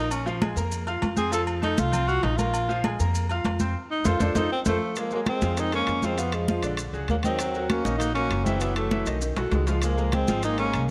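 Fiery and sultry, this Afro-Cuban jazz excerpt moves at a straight 198 BPM in 4/4, with a breathy, whispered tenor saxophone soloing up front over bright, brilliant upright piano accompaniment, woody pizzicato upright bass, soft-handed damped congas, ringing agogo bells and timbales, and grainy maracas. A band accent and drum fill lead into a section in Bb minor at 5.0 s, just after an intimate trombone with scooped notes and a smooth top enters at 4.7 s as a second line in the background. Harmonies shift through Bbm9, altered Bb dominants, Ebm7, Gbm7 and B9 before landing on Db6, all bathed in a moderate echo-chamber reverb.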